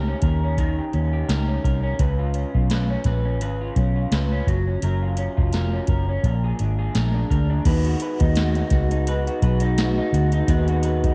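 A dark, slightly broken-up electric guitar through a small old amp, with analog chorus and a warbly pitch drift, opens this mellow, wistful bedroom-pop excerpt at 85 BPM alongside a round, foam-muted fingered bass sitting up front, and a soft vintage rhythm box joins at 0.2 seconds with a deep kick, crisp snare and metallic hats, overdriven and dusted with cassette tape grit. The lazy 16th-note swing carries seventh chords from Eb7 through Gbmaj7 and Bb7, all heard dry and close in a lo-fi home cassette recording. At 7.7 seconds, as the harmony moves to Abm7, a tight French horn section with light vibrato enters to hold sustained chords before the clip cuts off.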